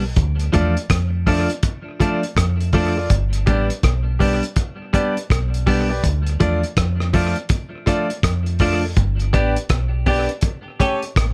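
The clean electric guitar and the deep dub fingered bass open together, the bass dark, round and punchy, sitting up front, while the guitar rings bright and twangy through lush chorus and tape echo. This is a serious, hypnotic stretch of roots reggae in D dorian at 82 BPM in 4/4, with a swung sixteenth-note feel, cut from a longer piece. A cloth-damped drum kit joins at 0.2 seconds with hi-hat, tight kick and rim click, its muffled, gritty, saturated tone kept close and lo-fi in a small room. A clear concert grand piano adds stabs from 0.5 seconds, intimate and polished, with audible action noise and long sustain. The harmony rocks between Dm and G before an A7 arrives near the end, all set in a light reverb.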